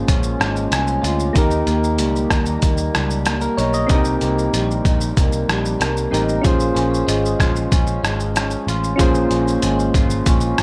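Up front sits a trip hop drum kit with a sampler feel: its thumpy kick, hi-hat, rim click and shaker sound pitched down, compressed and coated in 12-bit grit. Beneath it, a dark, foam-muted electric bass plays round, amped picked notes from about 0.1 seconds. An electric guitar through a small old amp adds a twangy, slightly broken-up tone, washed in lush chorus, vibrato and plate reverb. Soft synth keys with an electric-piano character supply gentle, detuned, mellow tones with a fast attack and a decaying tail, also carrying chorus and plate reverb. This wistful, lonely stretch of indie and bedroom pop moves through Bbm7, Eb and Cm7 before returning to Bbm7, set in a modest small room, and the cut from a longer piece runs to 10.6 seconds.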